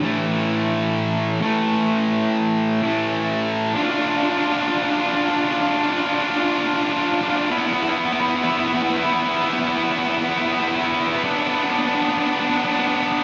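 A dreamy mix soaked in a long plate reverb, its top end rolled off above 11.0 kHz, wraps this brooding, melancholic rock fragment at a slow 64 BPM in straight 4/4. A lone electric fuzz guitar carries it from 0.0 to 13.2 seconds, bright and distorted, picked and compressed, double-tracked and placed up front with analog delay trailing its notes. Its range runs from A2 up to F4, moving through A5, Dm, E5 and Bm. After an opening passage, a new section begins at 3.8 seconds and builds steadily to the end of the clip. Cut from a longer piece, it leaves a heavy, wistful haze hanging in the air.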